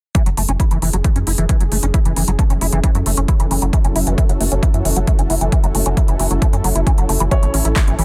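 A punchy electronic kick sits up front in this driving, soaring excerpt of uplifting trance at 134 BPM in F# minor. It is joined by a big-room dance kit of handclaps and crisp hats that pump with the sidechain, and a tight, saturated sequencer bass with a dark sawtooth-and-square bite and ring modulation. Above them, a squelchy, resonant acid bass spins bright arpeggios through phaser, ensemble chorus and digital delay, while a lush, thick unison pad of detuned saws holds a sustained F#m7 chord with chorus and sidechain pumping. At 7.3 seconds, as the harmony moves to A, a soft, felt-muted upright piano adds a mellow C#5 with digital delay, all within a dry, dense and heavily limited modern mix.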